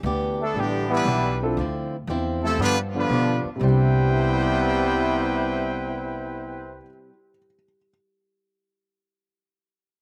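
A bright trumpet section with light vibrato and a soft attack carries the melody from 0.4 seconds, sitting up front with a slapback echo, while a clear, tight trombone section plays a second line beneath it with the same echo. This is a swinging, brassy jazz excerpt in C major at 118 BPM in 4/4, with a strong swing on the eighth notes, cut from a longer piece. A pizzicato upright bass with gut strings gives a woody, dark, thumpy bottom from the very start, alongside a picked swing-style acoustic guitar whose boxy tone and finger squeak sit in the background. A baby grand piano enters at 1.4 seconds, intimate and natural with audible action noise and short sustain, tucked behind the horns and continuing after the others until 7.9 seconds. The harmony moves through Em7, A9sus4, Dm9 and G7 before settling on Cmaj7 at 3.6 seconds, and the dry outdoor sound keeps every part close and direct.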